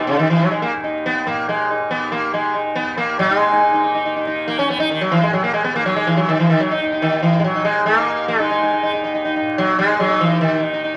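Solemn and longing, this brief fragment of Hindustani classical music, set in raga bhairavi, moves in triple metre at 141 BPM with a straight feel. The sitar carries the melody, sitting up front with a round, plectrum-plucked tone whose buzzing voice is haloed by ringing sympathetic strings. Beneath it, a softly plucked tanpura holds a bright, shimmering drone much lower in the mix, and both instruments sound together from the first moment to the close at 11.0 s. The melodic line shifts into a new passage at 3.2 s, carrying the yearning phrases onward over the steady drone. A wet studio reverb lends a sense of space, while vinyl crackle gives the recording an aged, intimate character.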